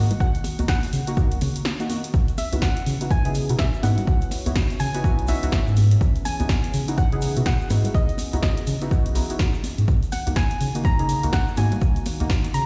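Heard through a big sound system in a bare room with large studio reverb, this smooth deep house excerpt at 124 BPM in C# dorian, swung on the 16ths, rides a punchy, tape-warm electronic kick up front and a round sub bass, with an analog drum machine's hi-hat and snare, very quiet high-tuned congas and a grainy egg shaker in the background, while a soft pluck melody with chorus and delay floats over mellow, warbling chord stabs with dub echo and a dark, moody analog pad carrying 12-bit sampler grit, phaser and sidechain pumping, the harmony shifting from D#m/C# to C#m11 after a brief break at 1.7 seconds.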